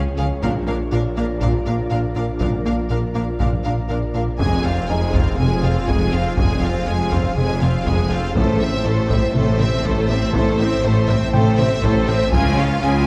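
This cut from a vast, tense hybrid orchestral and electronic film score opens on a dark, very quiet French horn section, a glassy FM pad with a slow attack, a rubbery, nasal square-wave bass riff, a menacing detuned saw bass with a saturated filter swell, and a felt-muted upright piano adding soft texture. At 0.2 seconds the symphonic strings join: violins carry a smooth melody with light vibrato over a second violin line, expressive violas use portamento, and focused cellos and distant double basses hold the low end. At 0.4 seconds a distant taiko ensemble struck with hard sticks enters in the background, as the harmony moves from Bb through Fm and Am to Db within a moderate recital hall reverb.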